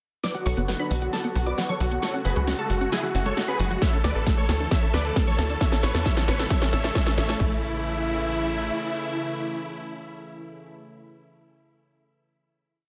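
A full-bodied, bright, detuned supersaw lead carries a repeating sixteenth-note riff in thirds and sixths over a pedal note, with sidechain pumping, a low-pass filter and tape echo, while a round analog pluck doubles it an octave higher behind a lush, slow-blooming pad and a mellow, six-step arpeggio drifting against the bar in this soaring, euphoric uplifting trance piece. Metallic hats, a huge snare, crashes and a drum fill drive the build alongside a tight off-beat sawtooth bass and filter sweeps on the supersaw and arpeggio, with a very quiet riser entering at 3.4 s and a punchy four-on-the-floor kick landing at 3.8 s. The drums stop at 7.5 s, and the piece closes on a final sustained chord in light reverb.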